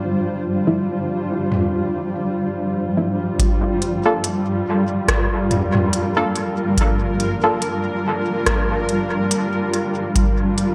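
At 71 BPM in a lightly swung 4/4, this hazy, deep ambient dub fragment in G minor moves from Dm7 to Gm7 at 3.4 seconds; a blurred, detuned granular cloud pad holds sustained chords up front with its own reverb, a very quiet bubbling, resonant stepped-filter texture drifts beneath it early on, muted filtered chord stabs arrive with chorus and dub echo, a crisp organic electronic drum kit of hi-hat, rim click and toms enters under a filter sweep and trails dub echo, and a deep analog electronic kick joins at 3.4 seconds, all within a spring-reverb space and an echo-heavy mix.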